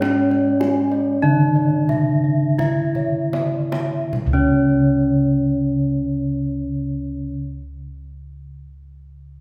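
Heard from further back in a reverberant recital hall, this excerpt of Javanese gamelan has a hypnotic, shimmering character, moving in a straight 4/4 at a slow 36-52 BPM and slowing through its opening 4.1 seconds. Up front, a close-miked bronze metallophone carries the melody with dry, full, ringing wooden-mallet strokes. Beneath it, a second metallophone plays a soft, mellow accompaniment with padded disc mallets, its paired tuning producing shimmering beats. Higher up, a boxy, warm metallophone in paired tuning shares arpeggios with a set of round, airy bossed gongs. Deep bossed gongs struck with padded beaters supply a beating, close and dry bass in the background. A tight, distant kendang played with hard hands adds percussion, plays a fill from 3.0 to 4.1 seconds leading into a new section, and stops at 4.9 seconds.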